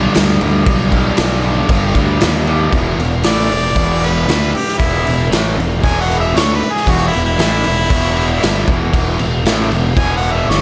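A straight 116 BPM garage rock stomp in 4/4 with a raw, swaggering mood: punchy kick, medium-tuned snare and crash on a gritty, saturated drum kit in a pumping stone room drive a double-tracked fuzz guitar riff and a round, overdriven fingered bass, moving from G to E5 at 2.7 seconds, where a bright harmonica solo with light vibrato and scooped notes carries the melody from 3.3 seconds in this excerpt cut from a longer piece.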